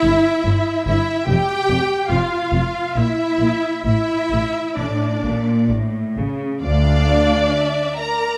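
A slow, solemn string orchestra movement in D minor opens with the full ensemble together: violins carry a yearning, vibrato-laden melody above a softer second violin line, while an up-front viola section adds expressive portamento to the accompaniment. Close, lush cellos and focused double basses bow the bass line beneath, all moving in a rubato 3/4 at roughly 63-73 BPM through a moderate scoring-stage reverb. The low strings fall away at 7.4 seconds, leaving violins and violas to settle onto a D minor chord as the fragment ends at 8.4 seconds.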